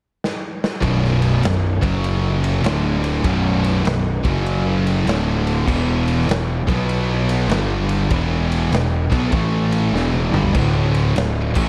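A dark, warm production with light reverb wraps this brooding, sludgy stretch of stoner and doom metal, cut from a longer piece and moving at 99 BPM in B minor with a swung eighth-note feel. A raw garage drum kit opens alone with a fill at 0.2 seconds, its saturated, gritty sound rising from a stone room, with a punchy kick, a medium-tuned snare, crash, ride and toms, all with a rolled-off top. At 0.8 seconds the riff lands together: two thick fuzz guitars sit in the background, one shadowy and one warm, joined by a bright, double-tracked high-gain guitar. Up front, a fuzz-soaked picked electric bass plays direct and amped, overdriven and low, anchoring the grind. The riff trudges through power chords on B, F#, D, E, G and A, and the drums throw in another fill at 9.9 seconds before the passage settles on D.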